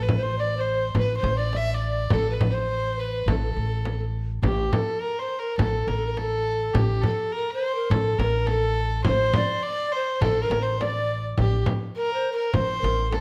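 Close, detailed microphones capture this melancholic, longing Arabic maqam ensemble in a moderate recital hall, in a passage cut from a longer piece. A hollow, airy pan flute with vibrato and a soft attack carries the melody over a reedy, gut-string violin second line. A woody, growly pizzicato upright bass sits up front, a small, bright frame drum played with hard hands enters at 0.1 s, and the straight 4/4 feel moves into a new section at 4.4 s.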